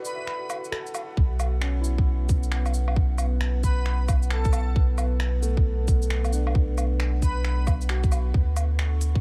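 Finger snaps, crisp hats, shaker and woodblock from a tape-tinged electronic kit set a swung pulse for this wistful, nocturnal future garage excerpt. They ride over a mellow, felt-muted upright piano with dub echo and a warbling, detuned pad, both pumping with sidechain, until a tight, up-front kick and a deep, round dub sub bass arrive at 1.2 s. An airy, dreamy lead with chorus and tape echo offers a brief phrase at 0.1 s and returns to carry the melody from 3.6 s, all against a bed of vinyl crackle.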